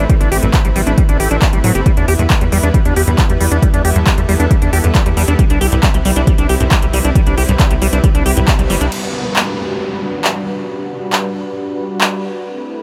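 A dry, close-sounding fragment of euphoric, uplifting trance, where an overdriven, punchy kick drives a crisp-hatted dance kit with handclaps and crash cymbal, its hats and cymbals pumping beneath a lush, detuned unison pad, a squelchy, resonant acid bass arpeggio and a tight, saturated sequencer bass, until the kick drops out just before both basses stop at 8.9 seconds and an electronic downlifter enters as a filter sweeps the pad to the close.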